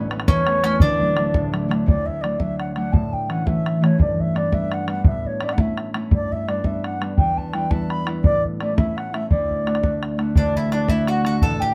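A ringing, fingerpicked concert harp opens this lively Celtic folk jig in D major at 113 BPM in 6/8, joined almost at once by a boomy, close bodhran up front and an airy wooden baroque flute carrying the tongued, expressive melody with vibrato from a distance, while a bright bowl-back mandolin picks a double-string second line from 0.3 to 1.5 seconds and returns at 10.4 seconds, all captured as a band playing live in one room with moderate studio reverb in this cut from a longer piece.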